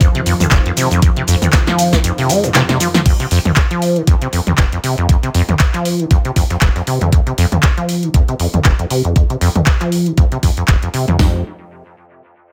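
A swung 118 BPM acid house groove in 4/4 drives this gritty, hypnotic excerpt, where a squelchy, resonant sawtooth acid bass riff with overdrive, dub echo and 12-bit grit runs up front over a thumpy, overdriven digital drum machine, a punchy electro analog kit with metallic hats, claps, shaker, toms and crash, a very quiet tape-warm breakbeat kit, and a smooth, warbling detuned pad that pumps in the background until 3.0 seconds, as the kick drops out for a fill before a filter sweep works across the bass from 3.1 seconds over an F5 chord.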